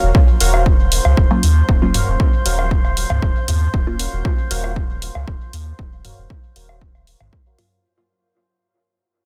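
Dub techno at 117 BPM in Eb dorian, nocturnal and hypnotic, this short cut from a longer piece rests on a single Ebm7 chord, with a punchy, up-front kick, a hi-hat and overdriven woodblock and toms in the background pulsing over a deep, round sub bass, all but the kick and hi-hat breathing with sidechain pumping. Warbling, lo-fi synth keys carry the riff through chorus and dub echo under a filter sweep, while a glassy texture with drifting overtones hangs on C5 and muted, detuned chord stabs with phaser sound from 1.3 to 4.0 seconds and briefly again at the end. The dense, heavily limited mix is dry, and the whole passage fades out.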